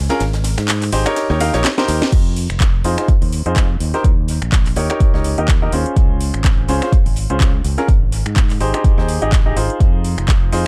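A swung 4/4 groove at 125 BPM drives this soulful, energetic piano house piece in F minor, cut from a longer track. It opens on a drop with the electronic kick held out while a drum fill builds from 1.6 seconds, and the punchy, analog kick enters at 2.1 seconds, sitting up front. A bright baby grand piano carries the riff through a low-pass filter and tape echo, its brilliant tone and long sustain pumping against the sidechain as chords move from Fm7 through Eb7 and Dbmaj7 to Abmaj7. Beneath it, a modern fingered electric bass plays a direct, punchy line with the same sidechain pumping. A layered house kit supplies a cracking snare, metallic hats, handclaps, finger snaps, ride and crash, while a very quiet, gritty acoustic fusion kit adds a high-tuned snare and hi-hat from a small room. Studio reverb and transformer saturation color the whole mix.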